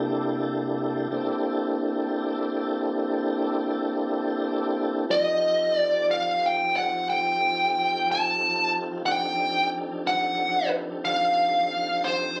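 A dark, picked, overdriven electric lead guitar with slapback echo carries the melody from 5.1 seconds over a full, lightly overdriven tonewheel organ that holds sustained chords through slow rotary speaker and chorus vibrato from the start, in a rollicking, gritty slow blues at 60 BPM in 12/8, moving from C13 to F13 in a wet club room captured on a phone in this short cut from a longer piece.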